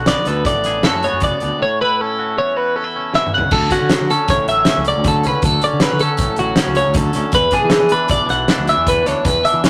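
Intricate and wistful, this math rock and midwest emo excerpt moves at 157 BPM in a straight 5/4, cut from a longer piece and tuned slightly under standard pitch. A compressed, clean twelve-string electric guitar carries the arpeggios up front and sits loudest in the mix, while a scooped, twangy electric guitar plays accompaniment beneath it with a warbly pitch drift. A fuzz fingered electric bass, round and punchy with overdrive, holds down the low end. The loose indie drum kit enters at 0.1 s with a fat snare, punchy kick, dark cymbals, hi-hat and toms, and plays a fill from 3.1 s that leads into a new section at 3.5 s. The harmony moves from D6 to A69, then settles on Dmaj7 before shifting to E9, all captured as a rough rehearsal-room recording with tube saturation and light reverb.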